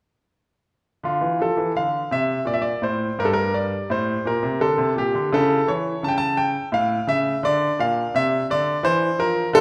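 Classical, baroque-style suite movement for solo grand piano in D minor, cut from a longer piece. It has a solemn, flowing mood at 84 BPM in 3/4 with a rubato feel, tuned to A4 = 444 Hz. The up-front piano plays from 1.0 to 9.6 seconds, its brilliant, intimate tone carrying long sustain and audible action noise as it moves through Dm, Gm, A/C# and Bb, all wrapped in a wet recital-hall reverb.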